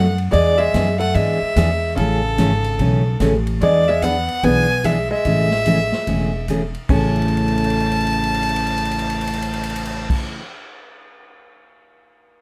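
A clear, focused fiddle carries the melody from the first moment of this cheerful western swing fragment, bowed by a single player with light vibrato and sitting up front in the mix. Beneath it, a dark, clean hollow-body archtop guitar plays a compressed second line, while a bright dreadnought acoustic guitar picks out the accompaniment with fresh strings and the odd finger squeak. A woody, growly upright bass, plucked on steel strings, anchors the swinging groove as the harmony moves between E7 and Amaj7 before settling on A. The drum kit joins at 0.2 seconds with a natural studio-room sound, its punchy kick, medium-tuned snare, hi-hat, ride and crash sitting low behind the strings, and a drum fill runs from 7.1 to 10.1 seconds. Light reverb gives the group a touch of space, and the drums ring on alone until 11.6 seconds after the other parts stop.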